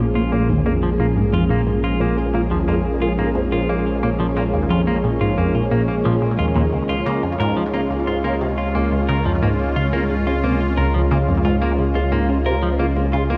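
A moderate plate reverb gives this short excerpt of ambient, sequencer-driven space music a spacious, glossy sheen, and its mood is mysterious and hypnotic in a straight 4/4. An airy, evolving pad of detuned sawtooths with a noise layer sits up front, holding sustained chords through chorus and shimmer reverb as the harmony moves from Bbm7 to Db at 6.7 seconds. Beneath it, a squelchy, juicy blip pluck with ring modulation repeats a low riff, colored by phaser, tape echo and shimmer reverb. A round sine sub bass, thickened by tube saturation, anchors the low end with deep sustained notes. From 0.2 seconds a clean, twangy electric guitar adds picked, compressed arpeggios, softened by a low-pass filter and trailed by tape echo and shimmer reverb.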